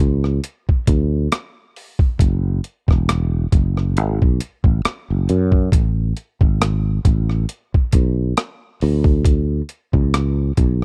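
A gritty, sampler-style boom bap drum kit sits up front, its thumpy kick, hi-hat and rim click compressed and tape-warm, with the character of having been re-recorded in a large room. Alongside it, a fretless electric bass opens the clip at 0.0 s, just ahead of the drums at 0.2 s, and holds sustained, growly notes in a low register, also placed up front and direct. The groove is a relaxed R&B and neo-soul feel in 4/4 with a light swing on the sixteenths, giving the short clip an unhurried, laid-back sway. The overall sound is a dry, close, 1970s-style studio recording with little reverb, lending the pair an intimate, mellow character.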